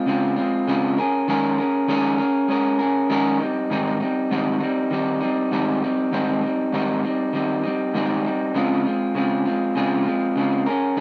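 A lone electric guitar through a small old amp, dark, slightly broken-up, picked and up front with a vibrato effect, carries this hazy, laid-back indie pop excerpt at 99 BPM in Ab major, drifting from Dbmaj7 through Eb7sus4 to Abmaj7 before returning to Dbmaj7 at 8.6 seconds, all in a dry, open-air sound with little reverb.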